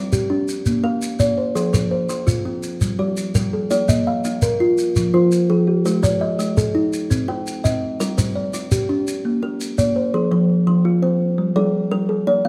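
Southern African traditional music in an mbira-style interlocking cycle, this hypnotic excerpt at 112 BPM in a straight 12/8 and F equiheptatonic tuning sets two soft, woody kalimbas, plucked with the fingertip and placed up front, spinning mellow arpeggios between F3 and the top of the fifth octave throughout its 12.5 seconds, while a grainy shekere adds percussion from 0.1 s until 9.9 s, all captured by close, detailed microphones in a moderate recital-hall reverb as the harmony circles through Bb, Fm, Gm, Ab and Cm.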